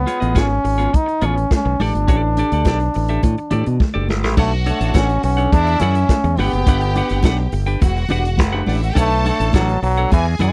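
Sultry and driving, this disco cut sets a bright, up-front trombone melody over a punchy fingered electric bass and a tight, rolled-off vintage drum kit. A twangy, compressed clean electric guitar joins them, while ringing, high-tuned congas sit in the background. After a drum fill at 3.8 seconds, a lush, bowed string section with vibrato enters at 4.4 seconds as a second line, and the chords move through Bm9, E9, Gmaj7 and Em9. The sound is dry and close, in the manner of a 1970s studio recording.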